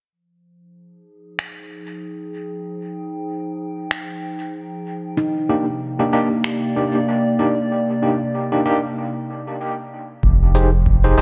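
Ambient dub with a deep, spacious mood and a gentle swing, cut from a longer piece, where a warbling, nostalgic pad with chorus fades in alongside tape-warm electronic finger snaps and shaker carrying dub echo, a ringing handpan drifts in the background from 5.2 seconds, a gritty, overdriven tine electric piano adds stabs with fast tremolo and dub echo, and after a break a round, dark analog bass and a very quiet electronic kick drum arrive at 10.2 seconds, all set in a moderate echo chamber reverb.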